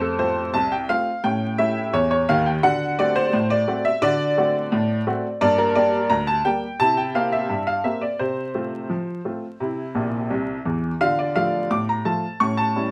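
A solo upright piano opens this jaunty ragtime fragment, its woody, slightly detuned tone sitting up front over a bed of vinyl crackle. The playing has a playful, straight two-beat feel at a moderate pace, ranging from deep bass notes at Bb1 up to bright treble at D6. The harmony moves through a lively chain of chords, stepping from F to A and D7, then on through Gm, C7 and F/C before turning toward Dm and A7 near the close. A short fill from 10.0 to 11.0 seconds adds a flourish before the phrase carries on. A moderate club reverb gives the worn instrument a snug sense of room, and the 12.9-second passage ends as though cut from a longer performance.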